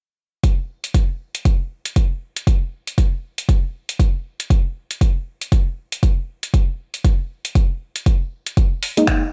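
At 0.4 seconds an electronic kick drum opens this smooth, late-night deep house fragment, cut from a longer piece. Deep and up front, it is joined from the same moment by a quieter drum kit of finger snaps and hi-hat, both parts carrying a tape-warm, layered character as if re-recorded in a small room. The groove rides a swung sixteenth-note feel in four, and the drums carry the whole passage on their own for most of its length. Near the close, at 9.0 seconds, a deep, mellow chord stab arrives just before the drums stop at 9.2 seconds. It is soft, full-bodied and slightly nasal, with a filter-plucked fast attack that decays, a dark chorus sheen and sidechain pumping. A digital ambience surrounds the sound.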